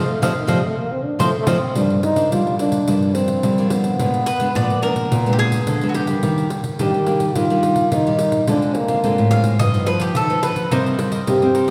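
Samba and choro with a festive, playful air: a dark, breathy trombone with light vibrato carries the melody in a jazz style over a bright, fingerpicked nylon-string guitar bass line, a warm, thumb-plucked nylon-string guitar and a jingly pandeiro struck with hard hands, while a crisp, picked cavaquinho sounds only at the opening and again from 10.7 s, and a double-strung bowl-back mandolin adds a second line from 4.3 s, the ensemble heard in the wet reverb of a church or concert hall.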